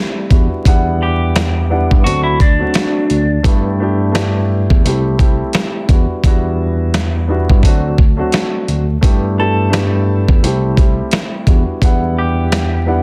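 Boom-bap hip-hop in E minor at 86 BPM with a swung 16th feel, tough and gritty, this excerpt sets a dark, woody upright piano from the start against a barky tine electric piano carrying the bass and a dusty, compressed sampler-style kit with a thumpy kick and medium-tuned snare up front, while a clean, picked electric guitar through phaser and delay plays the melody from 1.0 to 3.4 seconds and again from 9.4 seconds over Em9, D7, G69 and C6 chords, all in a dense, heavily limited master with vinyl crackle.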